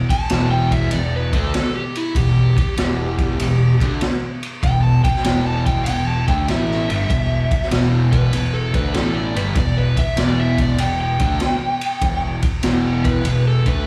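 Swung eighths in 4/4 drive this brooding, smoky blues rock and southern rock power-trio fragment, heard live through a club PA, where a gritty garage drum kit with a boomy kick, high-tuned snare and ride cymbal sits up front beneath a double-tracked fuzz guitar riff with slapback echo and a growly, overdriven fingered bass, while an overdriven slide guitar solos over an E minor chord throughout, its slapback echo and plate reverb blending into the room's moderate ambience.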